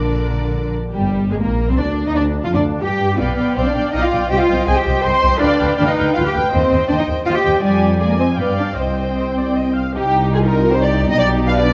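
A quick classical-period movement for string orchestra in C minor, set in 3/4 at 160 BPM with a rubato feel, this cheerful, spirited excerpt is cut from a longer piece and runs about 11.7 seconds. Muted violins carry the melody with light vibrato, sitting in the background beneath a second violin line, while violas add lush accompaniment and cellos and double basses anchor the bass, the basses bowed with a soft attack and placed up front. All sections play con sordino for a dark, veiled colour, and a moderate scoring-stage reverb surrounds the ensemble as the harmony moves through C minor with dominant-seventh turns before settling on G over B.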